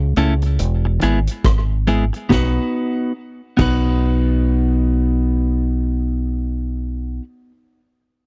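Roots reggae at 70 BPM in B major, sunny and uplifting, with a 16th-note swing feel and a dry, close 1970s-style studio sound in this short cut from a longer piece. A deep, round dub bass played with the fingers sits up front from the start, joined at 0.2 seconds by a clean, picked electric guitar with tape echo and a vintage drum kit with a punchy kick, high-tuned snare, rim clicks, hi-hat, and dark crash cymbals. The chords move from A to E and then B, and the drums drop out at 3.9 seconds, leaving bass and guitar to carry on.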